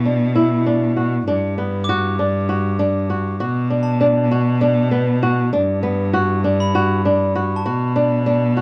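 Heard through light reverb and the warbling pitch drift of a worn old cassette tape, this urgent, restless excerpt of contemporary chamber music in 7/8 sets a clear, biting bowed cello with vibrato up front on the bass line beside dark, fingerpicked flamenco guitar arpeggios with audible finger squeak, while a bell-like glockenspiel struck with brass mallets sparkles in the background from 1.8 s as the harmony moves between Bm and Gmaj7.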